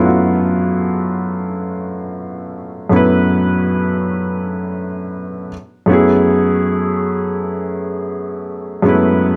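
Sultry and late-night, this short R&B fragment is cut from a longer piece and unfolds in free time in F# minor, tuned slightly low with A4 at 437 Hz. A lone upright piano carries it from 0.0 to 9.4 seconds, ranging from F#2 up to B4 and sitting intimately up front in the mix. Its tone is woody and a touch detuned, with the clatter of the action clearly audible, giving the playing a natural, close-up feel. The harmony rests on a lush F#m11, briefly steps away from any chord at 5.5 seconds, then returns to the same chord at 5.9 seconds as a second section begins. Light reverb and a dark, warm production wrap the instrument in a hazy, after-hours glow.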